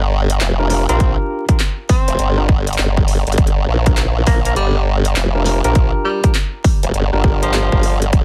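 A funky, playful glitch hop excerpt in G minor at 101 BPM with a swung 16th feel opens on an up-front, chorused and overdriven formant-sweep wobble bass and an overdriven dubstep kit of handclaps, hi-hat and rim click, all sitting over a Gm7 chord. A worn, slightly out-of-tune tine electric piano adds pumping, delayed stabs from 0.6 seconds, a distant, roomy tenor saxophone plays a jazz-style solo line with subtone and scooped notes from 0.9 seconds, and a punchy, overdriven electronic kick lands up front at 1.0 seconds. The mix is dry and densely limited, with a layer of vinyl crackle.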